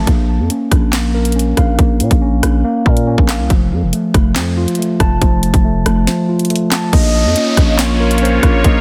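Drill hip hop at 140 BPM in a half-time feel, dark and menacing in Bb harmonic minor, where a mellow, clean tine electric piano plays delayed arpeggios over a growling, buzzy 808-style bass and an electronic kit of clipped kick, sharp snare, rim clicks, handclaps and bright hats, all dry and densely limited, until a break at 6.1 seconds gives way at 6.9 seconds to a round octave-layered synth lead with vibrato, an airy, detuned pad of sustained chords and a downlifter effect.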